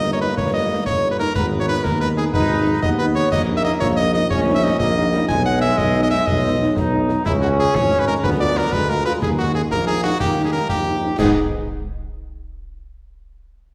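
A stern, resolute military-style march for wind band in 6/8 sounds from the start in a reverberant hall, with a warm solo cornet carrying the melody up front over a very quiet, distant French horn section of dark tone and light vibrato, soft-attacked mellow trombone chords, a smooth-topped tuba bass with light vibrato, and close acoustic concert snare, bass drum and clash cymbals, this brief excerpt coming to rest on a minor chord at 11.2 seconds.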